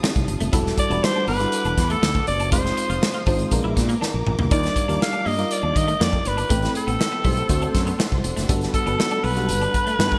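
Breezy and glossy, this polished 1980s jazz-funk pop passage moves at 121 BPM in a straight 4/4, centred on G major and cut from a longer piece. A punchy, up-front studio drum kit with a medium-tuned snare and gated reverb drives the groove, with a drum fill at 4.0 seconds, while a fretless electric bass joins at 0.2 seconds with a warm, amped tone. A glassy FM electric piano with a bell-like attack and subtle chorus supplies the accompaniment, and a slightly broken-up electric guitar picks out a riff in the background through an ensemble chorus. Behind them, a dark, woody string section holds lush sustained chords. From 0.8 seconds a raspy, growling alto saxophone takes the lead melody up front, gritty and vintage in character with vibrato, over chords that drift from F9 and Em11 through Ebmaj9 before resolving to Gmaj9, all set in a bright digital production with a lush hall reverb.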